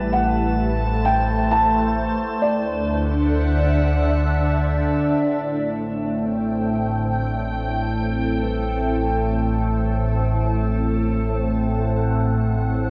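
Spacious and melancholic, this ambient passage in a gentle triple metre drifts through a lush hall reverb and the warble of worn cassette tape. An organ-like pad sits up front, its pure, detuned tones holding sustained chords throughout, thickened by ensemble chorus and a phaser. Beneath it, a round analog bass, deep and evolving with a touch of ring modulation, anchors the harmony from start to finish. A felt-muted upright piano carries a brief, intimate melody in its boxy, mellow voice, colored by tape echo, during the opening seconds. Very quiet, dark plucked arpeggios appear at the start and return from 7.0 to 10.6 seconds, while a glassy texture of drifting overtones hovers in the background until 5.2 seconds.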